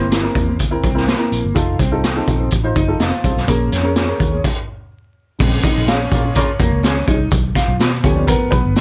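Passionate and driving, this cut from an uptempo 1960s-style soul track moves at 125 BPM in a straight 4/4, rooted in Bb minor. A raw garage drum kit sits up front with a punchy kick, a medium-tuned snare, hi-hat and crash, its saturated, gritty sound rolled off at the top, while a bright, jingly tambourine stays close and dry in the background. A vintage muted fingered bass gives a round, foam-muted low end, and a dark, woody upright piano, slightly detuned and boxy, comps through chords such as C7, F7 and Bbm7. An electric guitar through a small old amp plays a slightly broken-up, picked riff with analog chorus, and a clean, fingered second guitar adds phaser-tinged stabs further back. After a stop from 4.4 to 5.4 seconds, the piano takes a solo to the end, with a smooth horn section adding a brief second line with light vibrato around 6.1 seconds, all over a dry sound laced with vinyl crackle.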